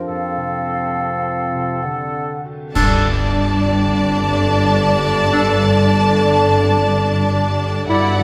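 Cinematic, emotional film score for orchestra, uplifting and hopeful, moving at 70 BPM in a rubato 3/4 and cut from a longer piece. Distant French horns hold sustained chords over ringing harp arpeggios, while a clear clarinet, a hollow flute that stops at 2.4 s and a roomy oboe carry second lines, and a cymbal swell with bright clash cymbals and concert bass drum sounds until 4.4 s. From 2.7 s lush violins take the melody with vibrato above background double basses, joined at 2.8 s by a second violin line, even violas and background cellos, inside a moderate recital hall reverb.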